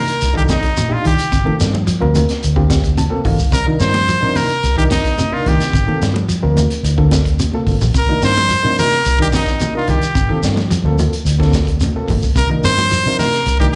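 Afrobeat at 109 BPM in C dorian, funky and defiant, this excerpt rides a two-chord vamp of Cm11 and Gm11 as it might sound through a club's PA, with a dark, round, foam-muted fingered bass beneath a crunchy, saturated breakbeat kit with a high-tuned snare and tight kick, a grainy shekere, and ringing congas set back in the mix. A clean, twangy electric guitar picks arpeggios through tremolo and slapback echo, while an overdriven, reedy electric piano with fast tremolo comps through a combo amp and adds a fill at 2.7 seconds. Up front, a brilliant, forceful trumpet carries the melody with vibrato, and the drums break into a fill at 7.5 seconds.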